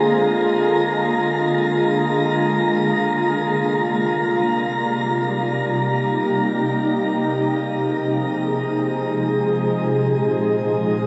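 Ambient music in free time and Bb mixolydian, luminous and peaceful, this excerpt from a longer piece centres on a shimmering, ethereal pad up front, its detuned, wave-folded sustained chords carrying chorus and an octave-up shimmer while a filter sweep runs across it until 9.8 seconds. Above it, a breathy, wind-like tuned noise texture holds a high Bb and drops away at 9.8 seconds, leaving the pad alone on a final open Bb chord. The dark production is bathed in a long, wet shimmer reverb.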